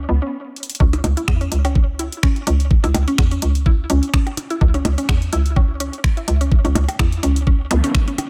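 A hollow, bouncy FM bass and a woody, mallet-like synth pluck open this cool, hypnotic minimal techno excerpt in C# minor at 126 BPM with a swung 16th feel, pausing briefly before a drum fill at 0.6 seconds on a punchy, overdriven analog drum machine of finger snaps and hi-hat leads into the drop at 0.8 seconds, where an up-front, tape-warm layered kick joins overdriven percussion blips, the pluck shimmers through chorus, phaser and tape echo, bass and pluck pump against the kick, and a short electronic zap flickers near the end in a lightly reverberant space.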